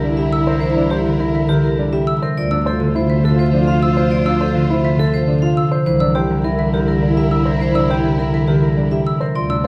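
A dark, crackling vinyl-tinged recording in a moderate stage reverb carries this urgent yet meditative minimalist classical excerpt in 3/4 at 103 BPM, where a ringing, metallic vibraphone with hard mallets sings the melody over an up-front, fingerpicked concert harp, lush bowed violin chords, dark, mellow grand piano arpeggios with audible action noise, a close-miked mellow bass clarinet on the bass, an airy alto flute second line in the background from 0.1 seconds, and dry soft-mallet xylophone arpeggios from 0.3 seconds, all moving through C7 and Dm7.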